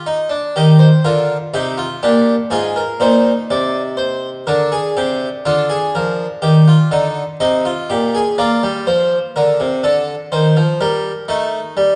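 A wet recital-hall reverb, with a 1.7-second decay, surrounds this brief joyful, elegant passage cut from a baroque-style three-part fugue in Eb major at a stately 62 BPM in straight 4/4. A Flemish-style harpsichord with two sets of strings plays solo and up front throughout, its airy, plucked tone sounding full across a range from Ab2 to Eb5 in a dark, warm production. The harmony moves gracefully from Eb through Fm7/Ab, Bb7, a return to Eb and Bb before settling on Cm7/Eb near 10.3 seconds.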